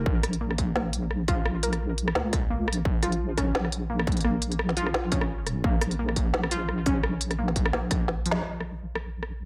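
A warbly, dusty pluck and a deep, soft wobble bass open this dark, cinematic half-time drum and bass excerpt together. The pluck spins arpeggios through chorus and digital delay, while the bass holds low and sustained beneath it with its own chorus. A distorted, tape-toned electronic kick and an organic electronic kit of woody snare, rim clicks and smooth hi-hats arrive almost at once, both placed up front, with a lilting swing on the sixteenths. The pluck has a lo-fi, detuned character with a sub octave and a filter sweep, its notes decaying after a fast attack, and a light reverb gives the mix a modest sense of space. A drum fill begins at 8.1 seconds and a band accent lands within it. The pluck falls away at 8.4 seconds, leaving the bass and kit to carry the brief closing stretch.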